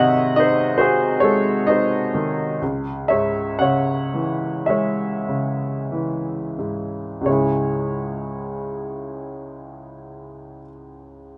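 Close, detailed microphones and a light reverb place a brilliant baby grand piano up front in this short classical fragment, cut from a longer piece. The solo piano plays a lyrical, dark and reflective line in C# harmonic minor, tuned to A4 = 435 Hz, ranging from C#2 to F#5. The 4/4 pulse moves with a free rubato feel between 44 and 71 BPM, and the tempo slows through the opening 7.3 seconds. The harmony opens on G#7 and settles onto C#m at 2.6 seconds. A new section begins at 7.3 seconds and carries the piano's natural tone to the close of the passage.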